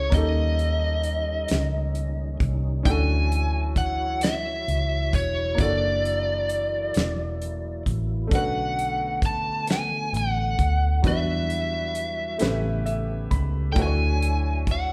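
A slow, straight six-eight R&B groove from a damped 70s drum kit with a fat snare and tight kick, and a round, punchy, foam-muted fingered electric bass, carries a biting, overdriven lead guitar melody up front, while a clear concert grand piano accompanies and a tonewheel organ with key click, chorus vibrato and slow rotary speaker holds sustained chords, all played live in one room with wet large-studio reverb, the piano slipping in a fill at 12.4 s in this intimate cut from a longer piece.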